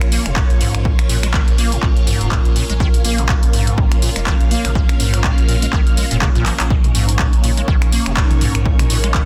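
Dry and densely limited, this raw, trippy acid house excerpt rides a swung groove at 123 BPM in Bb minor, parked on a single Bbm chord. A squelchy, hollow square-wave acid bass carries the riff from 0.1 seconds, its resonant filter sweeping over fast-attack, decaying notes thickened by ensemble chorus. Beneath it, a deep triangle sub bass sits saturated in the background, pumping with the sidechain, while a lush vintage string machine holds sawtooth chords with a sub octave, soft attack, phaser, ensemble chorus and the same pumping. A tape-warm analog drum machine supplies finger snaps, handclaps, hi-hat and toms, and an overdriven, punchy electronic kick arrives at 0.4 seconds to drive the pulse. A drum fill at 6.5 seconds punctuates the groove before the clip cuts off.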